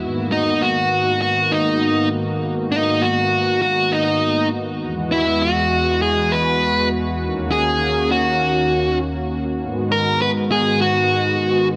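A dark, overdriven electric lead guitar carries the melody up front with delay, entering at 0.3 s over a detuned sawtooth analog pad whose soft-attack, chorused chords move through G#m7, Eadd9 and D#m7 in this nocturnal, driving synthwave excerpt in G# minor at 100 BPM, set in a moderate digital stage reverb, with a new section beginning at 9.6 s.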